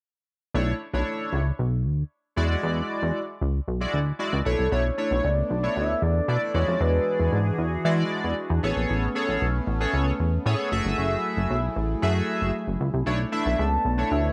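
Bathed in a moderate spring reverb, this cut from a longer funk piece has a funky, late-night mood built on rich chords such as Bm11, E9, Amaj9 and F#m9. A glossy, up-front chorused synth bass with a filter pluck sits beside a retro chorused polysynth that carries the accompaniment with pulse-width movement and ring-modulated colour, while a shimmering, detuned pulse-width pad adds sustained chords from 4.7 seconds. A round, dark octave-layered synth lead, treated with chorus, phaser and vibrato, carries the melody from 4.5 to 7.6 seconds and returns briefly at 13.6 seconds.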